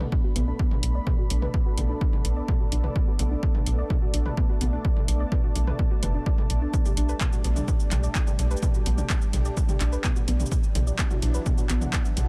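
Melodic techno at 127 BPM in B minor, cinematic and hypnotic in this short excerpt: a tape-warm, punchy kick sits up front with a tight, dark sawtooth sequencer bass, while an analog drum machine adds handclaps, hi-hat, shaker and toms, a soft round pluck spins detuned arpeggios through lush chorus and dub echo, a smooth, warbling vintage pad holds sustained chords in the background, and an ethereal airy pad drifts above in built-in reverb, the bass and both pads and the pluck all pumping against the kick as the harmony moves from Bm7 to Gsus2/B at 6.7 seconds and Dadd9/B at 10.5 seconds.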